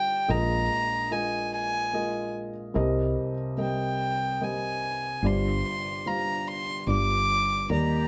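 An up-front violin with a rich, reedy gut-string tone opens this reflective, melancholic acoustic folk-pop ballad together with a felt-muted upright piano, whose dark, intimate sound carries audible action noise. The piece moves at a slow 73 BPM in 3/4 time in C minor, the violin singing the melody high in its range while the piano supplies the accompaniment. At 0.3 seconds a fingered electric bass enters with a growly, punchy, foam-muted presence. The harmony moves from Bb7sus4 through Cm7 and G7sus4 to G7. Only at 7.7 seconds does a distant, veiled string section appear in the background with con sordino sustained chords, just before this brief cut from a longer piece ends, all heard in a moderate studio reverb with the feel of a band playing live in one room.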